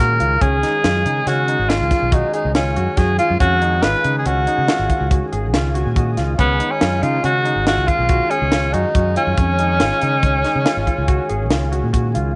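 A breathy, whispered tenor saxophone with a soft attack and light vibrato carries the melody up front in this bright, intricate progressive instrumental at 140 BPM in 7/4 and Db major, over a dry funk drum kit with a high-tuned snare and tight kick that enters at 0.2 seconds, a fretless electric bass with analog chorus, concert grand piano arpeggios with audible action noise and long sustain, and a smooth tonewheel organ with chorus vibrato sitting in the background and adding a fill at 5.5 seconds, all set in a moderate echo chamber reverb in a brief cut from a longer piece.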